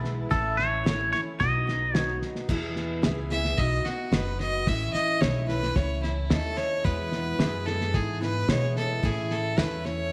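This short excerpt of honky-tonk and classic country moves at a straight 110 BPM in 4/4 in E major, with a heartfelt, down-home mood. A cloth-damped, thuddy drum kit sets a muffled, gritty groove with a fat snare, tight kick, dark cymbals and hi-hat, while a woody pizzicato upright bass anchors the low end. A bright, full-bodied picked jumbo acoustic guitar and a detuned, jangly vintage upright piano fill in behind. A smooth studio string section adds rich bowed chords in the background briefly at the start. The twangy, compressed electric guitar carries the melody up front from 0.3 to 2.2 s, colored by tape echo. Then a clear, nasal fiddle with light vibrato enters at 3.3 s for an earthy solo over chords moving between E, A and B, all set in a moderate plate reverb and small-room ambience.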